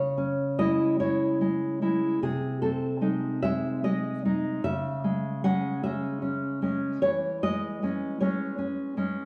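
A small stone room with a wet reverb surrounds an up-front, full-bodied nylon-string guitar whose fresh strings and finger squeak give this short fragment of a longer piece an intimate, close-up presence. It is a nostalgic, warm romantic piece for solo classical guitar in C# minor, unfolding slowly in 6/8 at 47-52 BPM with a free, rubato feel. The thumb-plucked playing and deep classical tone carry the harmony from C#m through G#/B# and back to C#m, settling on C#m/E near 7.0 seconds.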